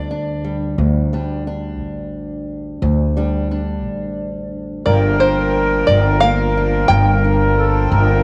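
Reflective and haunting, this short acoustic folk piece in a straight 6/8 is cut from a longer performance. A fingerpicked, ladder-braced guitar with old strings lays down a dark, boxy bed throughout, while an upright bass, plucked on steel strings, sits up front with a growly, woody tone. An open-back banjo sounds a brief plunky figure at the very start, drops out after 0.5 seconds, and returns with a twangy melody when the second section arrives at 4.9 seconds. There the harmony moves from Dsus4 to Gm7, and a reedy, mellow accordion joins up front with a second line marked by slow beating, as a hand-pumped harmonium adds breathing, airy sustained chords beneath. A moderate echo-chamber reverb and small-room ambience give the group a close yet lingering space.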